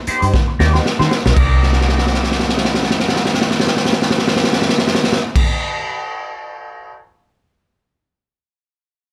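A cool, funky excerpt opens with a raw, gritty garage drum kit in a pumping small room, with punchy kick and dark cymbals, alongside a round, foam-muted fingered bass and a slightly broken-up picked electric guitar through wah, all in a swung groove under light reverb that moves from Eb6 to Cm9 while the drums roll through fills up front and carry on alone after the bass stops at 5.4 seconds and the guitar at 5.5 seconds, ending at 6.9 seconds.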